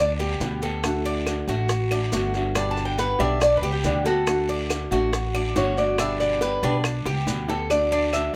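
A metallic, double-strung Cuban tres leads this sunny, danceable excerpt of Cuban son and guajira, sounding briefly at the start and then carrying the solo melody from 2.7 seconds, over a second picked tres playing arpeggios throughout. Up front, a woody pizzicato upright bass anchors the shifts between G and D, while a dark, fingerpicked flamenco guitar with audible finger squeak adds accompaniment. Tight, high-tuned bongos and cowbell, dry claves, grainy maracas and a raspy, distant guiro fill out the percussion, with a drum fill at 7.1 seconds, all within a moderate studio reverb.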